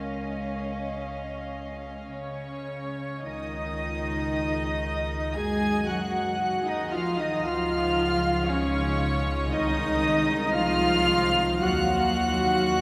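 A cinematic, emotional film score for orchestra, this hopeful, uplifting passage is cut from a longer piece and moves at a slow, rubato pace in four. It opens with bowed strings played sul tasto: a soft-attack violin section in the background holding a second line, an intimate viola section with vibrato as accompaniment, and a rich, distant cello section carrying the bass over a Dbadd9 chord. At 2.1 s a clear, pure violin section takes the floating melody high above, joined by an airy, crisp-attacked concert flute with vibrato and a classical-style solo clarinet, both tucked in the background as second lines. A very quiet, dark French horn section enters at 3.2 s with sustained chords and light vibrato, and a close, warm double bass section joins just after to deepen the bass. The harmony moves through Gb, back to Dbadd9, then Ab/C and Ebm, all bathed in a wet cathedral reverb with a long, lingering tail.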